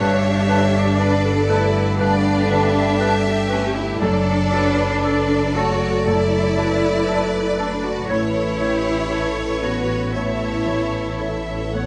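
Cinematic, emotional film score for orchestra, this uplifting and tender passage moves at a rubato 59 BPM in 4/4, set in G lydian and cut from a longer piece. A lush violin section carries the expressive, vibrato-rich melody, while a second violin section with a smooth top sits in the background beside an airy, hollow flute ensemble with rolled-off highs and a solo clarinet in classical style, each adding its own second line. A clear, natural grand piano provides the most prominent accompaniment, joined by a focused, distant viola section, as a roomy French horn section with light vibrato holds sustained chords behind them. The bass is anchored by an even, smooth cello section and a double bass section, both bowed with vibrato. Every part plays throughout the nearly 12 seconds as the harmony moves from Gadd9 to D/F# at 4.0 seconds and Aadd9 at 8.1 seconds, all bathed in a moderate scoring-stage reverb.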